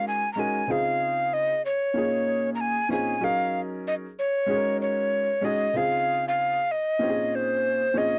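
This hip hop excerpt moves at 95 BPM in 4/4, with a 62% swing on the sixteenths that gives its cool, warm mood an easy lope. A breathy tenor recorder carries the melody between C5 and Bb5, its wooden tone marked by vibrato, tongued attacks, a chiff and a slightly unsteady, close-miked presence up front. Beneath it, an upright piano supplies accompaniment from Bb2 to Bb4, sounding woody, smooth and slightly detuned, with a vintage character and long sustain that also sits up front. Both parts play throughout the full 8.2 seconds, cycling through Ab7sus4, Dbmaj7, Bbm11 and Gb69 in Db major, tuned to A4 = 441 Hz. The sound is dry and close, like a 1970s-style studio recording with light reverb, dusted with vinyl crackle and a faint mains hum.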